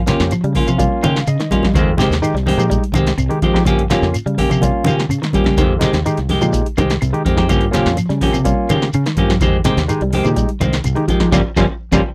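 A clean, up-front semi-hollow electric guitar stands out, firing hollow-bodied, picked stabs over a funky, hypnotic afrobeat groove in straight 4/4, cut from a longer piece. Beneath it, a fingered electric bass holds down a warm, direct low end while a barky tine electric piano, lightly overdriven through a combo amp, supplies accompaniment and adds a short fill between 0.8 and 1.8 seconds. A second electric guitar, dark and just at the edge of break-up, sits in the background playing arpeggios touched with subtle chorus and slapback echo. An analog drum machine drives the beat with a deep kick, punchy snare and metallic hats, while low-tuned congas with a thick skin, a grainy shekere and woody claves fill out the percussion further back. The harmony sways between Gm7b5 and Fm9 in a dry, close 1970s-style studio sound, and the band lands a collective accent from 11.3 seconds to the end.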